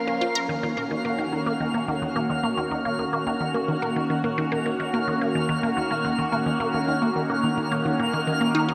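A phased analog pad and a twinkling granular texture open together at 0.0 s, and a resonant blip pluck joins at 0.1 s in this fragment of mysterious, expansive, sequencer-driven space music in Eb minor at 108 BPM in a straight 4/4. The up-front pad holds sustained chords on Ebm7, its detuned sawtooth tone swirling and warbling with a vintage character through phaser and chorus. The pluck carries the riff in the same middle register. It is squelchy and juicy, with a fast attack, short decay and a moving notch, and it is colored by phaser and analog delay. Above them, the granular layer sparkles with an FM, octave-up shimmer, swelling in slowly and lingering in its own built-in reverb. The whole piece sits in a huge, wet ambient reverb that stretches every sound into a vast, drifting space.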